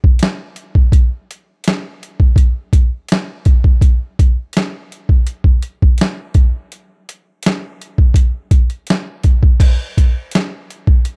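A lightly swung 4/4 groove at 83 BPM opens this short cut from a longer R&B piece, its sixteenths leaning just off the grid for a relaxed, late-night feel. A boom bap sampler-style drum kit carries the whole 11.2 seconds, built from kick drum, snare drum, hi-hat and crash cymbal, and it sits up front in the mix. The kit has a gritty, compressed character, with a thumpy kick and a medium-tuned snare at natural pitch, re-recorded in a large room to give the hits some body. The overall sound is dry and close, in the manner of a 1970s studio recording with little reverb, which suits the introspective mood. At 9.6 seconds the piece moves into a new section that carries through to the end.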